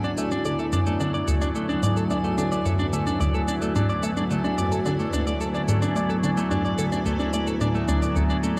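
An evolving, morphing wavetable pad sustains bright chords on D through phaser while a clean, compressed twelve-string electric guitar picks arpeggios through analog delay, a squelchy, resonant blip pluck plays a riff through phaser, cassette tape and delay, and tape-warm congas and shaker keep a straight 109 BPM pulse, and at 3.7 seconds a very quiet, twinkling granular texture with octave-up shimmer joins them, all set in a cathedral reverb that gives this cosmic, luminous ambient space-music fragment in D lydian a vast, echoing depth.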